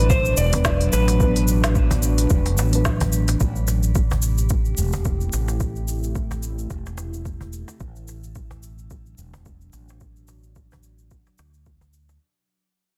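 A brief, dark slide guitar phrase drifts through digital delay and shimmer reverb over a warbling, nostalgic pad and a round, up-front fretless bass, opening this hypnotic organic downtempo groove at 109 BPM with a light 16th-note swing, moving from Bm to Am7 and back. Overdriven electronic kicks and a kit with a woody snare, smooth hats and cabasa join at 0.1 s, with a snappy, close and dry cajon played with soft hands arriving at 0.5 s alongside muted, felt-like synth keys that pulse with sidechain pumping in the background until 3.4 s. The lo-fi pad's chorus, phaser and shimmer wash sit under a dense, heavily limited master as the whole passage fades out across its 12.2 seconds.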